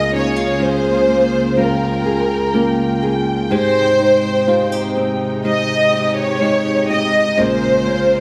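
At a slow, straight 62 BPM in 4/4, this emotional, heartfelt pop excerpt in Ab major moves from Db6 to Abmaj7 and then Bbm7, with a smooth, bowed violin section carrying the melody up front with vibrato. A bright, bell-like tine electric piano plays clean, direct accompaniment, while a rich, focused string section holds lush sustained chords and a small, fingerpicked nylon-string guitar adds warm acoustic arpeggios in the background. Moderate scoring stage reverb and a touch of small room ambience give the close studio sound a gentle sense of space.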